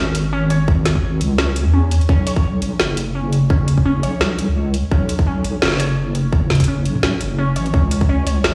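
Dark and tense, this short cut from a longer half-time drum and bass track moves with a light swing on the sixteenths. A deep, soft wobble bass built from square and sine waves holds the low end from the start, compressed and up front, thickened with chorus and tube saturation. Above it, a warbly, dusty pluck plays arpeggios from 0.0 seconds, its detuned, lo-fi tone coloured by a noise layer, a filter sweep, chorus, phaser and tape echo. The drum kit enters at 0.1 seconds with a woody snare, metallic hi-hats and toms, and a tight electronic kick joins at 0.7 seconds. The harmony moves from C#m to Bsus2 and settles on C#5 near the end, all heard through a stone-walled, bare room on a big sound system with light reverb.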